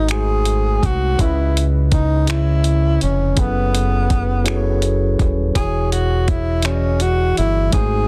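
Sensual and intimate, this slow six-eight R&B excerpt in E major at 55 BPM sets a breathy, close-miked tenor saxophone melody with vibrato and a soft attack over a barky tine electric piano through a phaser, a deep, round dub fingered electric bass up front, and a dusty sampler-style drum kit of finger snaps, hi-hat and thumpy kick with gritty soft clipping on the snare, moving through G#7b9, C#m9, F#m11 and E69 in a dry, dense, heavily limited modern mix.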